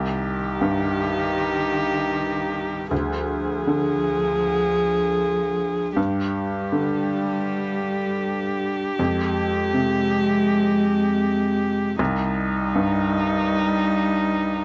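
A felt-muted upright piano, viola and cello begin together in this reflective, longing fragment of neoclassical chamber music in C minor, moving at a rubato 79 BPM in 4/4 through Cm, Ddim, G5 and Fmadd9 before settling back on Cm. The mellow, intimate piano sits up front with audible action noise in its low accompaniment, beside a close solo viola played sul tasto with vibrato and an airy bow, while a single cello carries a second line with the same soft attack and sul tasto bowing but lighter vibrato. Light reverb and a gently rounded top end keep the sound warm and hushed.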